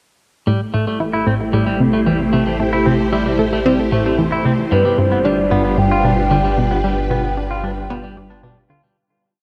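Hypnotic, cosmic ambient space music in A minor at 113 BPM opens at 0.5 s with a swirling, phased string machine holding Am7 chords over a deep, round analog bass fading in, a bright sawtooth pluck repeating a 16-step sequence through chorus and delay, and a twangy clean electric guitar picking a 12-step delayed arpeggio that drifts against the bar, until at 4.7 s the harmony moves to G7 and a soft, octave-layered synth lead with vibrato, chorus and phaser enters with a free-roaming melody, the whole mix bathed in a huge reverb and cassette-tape haze as the piece fades out from 6.1 s.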